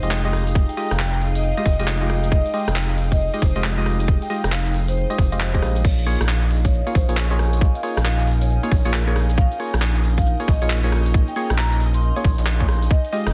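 A skippy two-step garage groove at 136 BPM swings its sixteenths in 4/4, driven by a tight, overdriven electronic kick that enters at 0.6 s up front alongside a rubbery, hollow square bass and a crisp, tape-toned garage kit of hi-hats, handclaps, rim clicks and crash, with a softly clipped snare and a grainy tube shaker tucked behind. Hollow, percussive organ stabs with chorus and phaser sit over silky string-machine chords and a nostalgic, lo-fi pad, both pumping against the kick, while a ringing soft-mallet vibraphone carries a vintage, band-limited melody through tape echo in the background until 13.1 s. The moody harmony moves from Fm9 to Bbm7 in Bb dorian, and the mix is dry, dense and heavily limited in this short cut from a longer piece.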